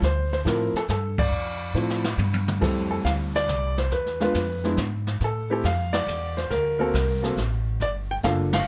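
Jazz piano trio in D minor, swinging in 3/4 at 139 BPM with a moody, late-night feel in this short excerpt. An intimate concert grand carries the melody up front, its action noise audible and its bass deep, while a woody pizzicato upright bass sits up front as well and a brushed kit with dark cymbals and a boomy kick plays a fill from 1.7 to 2.6 s. The harmony moves from Dm7 through Fmaj9 at 2.6 s, E(b9), A5 and D7(no3) to Gm7, with band accents punctuating the dry, natural sound.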